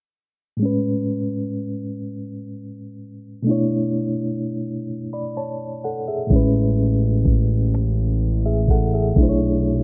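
A reedy electric piano with a fast tremolo opens at 0.6 seconds, sitting up front and alternating Amaj9 and Bm11 chords in a tender, slow six-eight R&B groove at 42 BPM in A major. At 6.3 seconds a fat, saturated analog bass joins up front in a low register alongside an electronic drum kit of finger snaps, hi-hat and a knocking kick. The dry, close 1970s-style sound carries a low-pass filter and a filter sweep across the whole excerpt.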